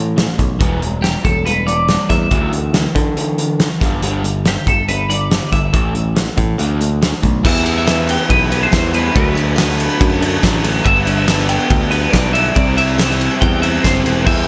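Bittersweet and cool, this indie rock excerpt moves at 140 BPM in E minor, with a raw garage guitar riff, overdriven and double-tracked, riding over a bright, growly picked bass and a loose drum kit with a fat snare, punchy kick and dark cymbals sitting up front. A clean, twangy twelve-string electric guitar carries the melody from 1.0 seconds, shimmering through lush chorus, slapback echo and analog delay, while a very quiet, jingly tambourine joins at 7.6 seconds. A buzzy overdriven combo organ with light vibrato surfaces in the background only at 14.3 seconds, and a lush hall reverb gives the whole a big arena sound.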